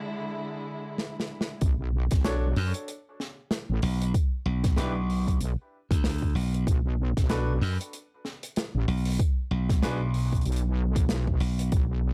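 Dry and gritty, with little reverb, this funky, playful glitch hop excerpt in B minor moves at 95 BPM in 4/4, swung at 58% on the sixteenths. It opens on a clear, smooth chamber string section holding sustained chords under a filter sweep and sidechain pumping, while the acoustic kit's hi-hat and medium-tuned snare add a fill from 1.0 seconds. The drop lands at 1.6 seconds, where a heavy, resonant wobble bass with chorus and tube saturation sits up front beside a punchy, layered electronic kick. A brilliant grand piano plays short stabs through sidechain pumping and analog delay, and a glassy, direct slap bass with transformer saturation joins at 2.6 seconds. The harmony runs from E7 through B7(no3), Bm and Asus2 before giving way to an unharmonised stretch near the end.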